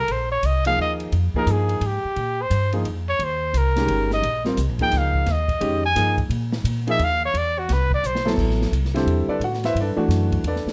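Modal jazz in a swinging 3/4, intense and searching, cut from a longer piece. A breathy trumpet carries the melody as an up-front solo from the first moment, its tone soft-edged with vibrato, and it falls silent at 8.3 seconds. An upright bass, played pizzicato with a woody, thumpy sound, sits close beside it, while a clear baby grand piano enters as accompaniment at 0.7 seconds. An open jazz drum kit sits further back in an airy small room, with dark cymbals, a medium-tuned snare and a boomy kick, and it plays a fill at 8.0 seconds. The harmony moves from Bb13sus4 through E5 to Am11, and a light reverb surrounds the group.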